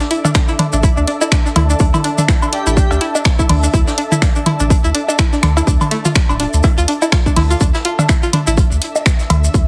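A twangy, string-like resonator pluck riff opens this quirky, hypnotic minimal techno excerpt, bright and sidechain-pumped with chorus and delay, over an ethereal, warbling pad, a flickering granular texture in the background, quiet brushed acoustic drums and close, mellow maracas. A punchy, overdriven kick sits up front alongside an overdriven house kit of finger snaps and hi-hat, plus analog electronic toms, cowbell, woodblock and bongos with delay, while a deep, thick, saturated sub bass enters at 0.7 s. A soft, dreamy lead with vibrato touches a single note at 2.5 s, and the swung groove is pressed into a dry, heavily compressed, radio-like mix.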